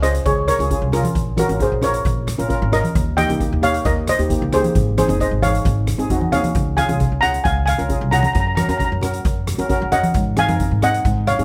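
A straight 4/4 calypso groove at 133 BPM in Db major sets a festive, carefree mood, with a street-band drum kit of hi-hat, rim click and a boomy kick sounding polished and roomy, and bright, low-tuned congas joining close but in the background at 0.5 s. Up front, a double seconds steel pan played with medium rubber sticks carries the melody in a metallic, vintage, band-limited tone bathed in plate reverb, while a second pan struck with soft rubber sticks adds mellow, airy accompaniment beneath it. A woody pizzicato upright bass on steel strings anchors the chords as they move from Db through Bbm7, Eb7 and Ab7 to Dbmaj7 and Gb in this short clip from a longer piece.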